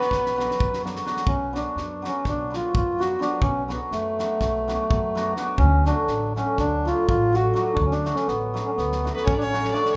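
A moderate recital-hall reverb surrounds this restless, virtuosic Balkan wedding-band excerpt in 9/8, where a reedy, close-miked accordion carries the melody up front over a shimmering hammered dulcimer, a woody pizzicato upright bass and a natural drum kit with a tight kick and medium-tuned snare, while a rich, distant bowed violin adds a smooth second line only until 0.8 seconds and again from 9.1 seconds.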